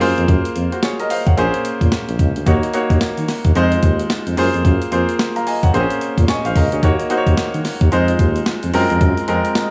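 New jack swing R&B at 110 BPM with a confident, bouncy swing, built on a clean 12-bit drum machine whose thumpy kick and medium-tuned snare sit up front, a mellow tuba carrying the bass line with vibrato and jazz phrasing, a clear, polished baby grand piano comping through lush chords like Gbmaj9#11 and Bbm9 with a brief fill at 6.0 seconds, and a grainy, very quiet tube shaker joining at 2.5 seconds, all set in light small-room reverb.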